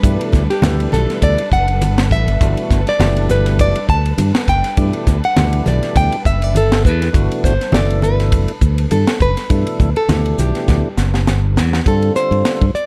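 A swung 4/4 groove at 102 BPM drives this soaring, funky electric jazz fusion excerpt in G major, where a fingerpicked nylon-string guitar carries the melody with slapback echo and audible finger squeak over a fat tonewheel organ through slow rotary speaker, lush bowed strings in the background, a growly, punchy fingered bass and a tight, dry funk kit up front with a high-tuned snare, soft low-tuned congas, and a drum fill from 10.7 to 11.9 seconds leading the Gmaj9 harmony to a G9sus4, all in a dark small-room production.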